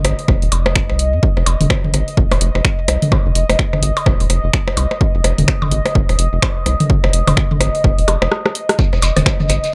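A rubbery, hollow square-wave bass opens this short cut from a longer minimal techno track, bouncing up front through tube saturation and sidechain pumping. It is joined from the start by a punchy analog drum machine of finger snaps, hi-hat and rim click, a minimal click kit of blips, rims and toms sent through digital delay, and a warbling, lo-fi pad that hangs high with chorus, phaser and reverb, pumping against the beat. An electronic kick enters at 0.3 seconds and sits loudest in the mix, giving the sparse, clinical groove its swung, steady pulse over a single F7(no3) chord. A drum fill around 8.1 seconds leads into a brief break, and a grainy, band-limited shekere slips in at 8.8 seconds just before the end. The drum parts carry a tape-warm colour, set against light room reverb.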